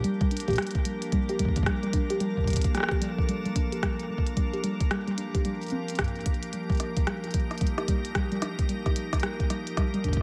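Eerie and glitchy, this short IDM excerpt moves with a swung sixteenth-note feel in 4/4, cut from a longer piece. An icy glass pad holds sustained chords throughout, its crystalline, airy tone given body by detuned unison voices, a noise layer, slow attack and long release, all bathed in chorus and its own reverb. Alongside it, a warbly, dusty pluck plays arpeggios with a lo-fi, dark character, its square and sawtooth tones shaped by a filter sweep and colored by lush chorus and digital delay. A soft, tape-toned electronic kick sits up front, while a glitchy kit adds clicky hi-hats and rim clicks with small room ambience and a touch of digital delay. The harmony drifts from Gm7 to Bbmaj7 at 2.2 seconds and settles on Ebadd9 at 6.5 seconds, all under a light reverb.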